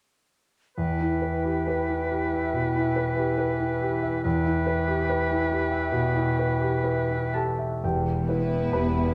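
Opening at 0.8 s in E minor, a clear, up-front concert grand piano carries a passionate, brooding classical melody at a rubato 57-72 BPM in 4/4 alongside a bright oboe, a hollow silver flute and a soft-attacked bassoon, before muted, veiled cello and double bass sections arrive at 7.8 s and lush con sordino violins and muted violas follow at 8.3 s, the whole excerpt bathed in a dark, wet recital-hall reverb.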